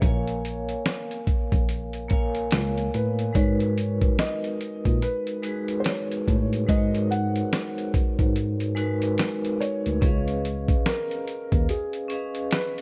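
Swung sixteenths in 4/4 drive this hazy, nostalgic lo-fi hip hop fragment, carried by a gritty, compressed sampler-style drum kit with a thumpy kick, fat snare and hi-hat sitting up front. A soft, boxy felt-muted upright piano carries the melody through a low-pass filter and analog delay, while a metallic, ringing vibraphone with hard mallets and slow motor vibrato accompanies over A#m7, G#m9 and C#9. A worn, slightly out-of-tune tine electric piano supplies a lightly overdriven bass line until 11.7 s, all within a dark, warm production with light reverb.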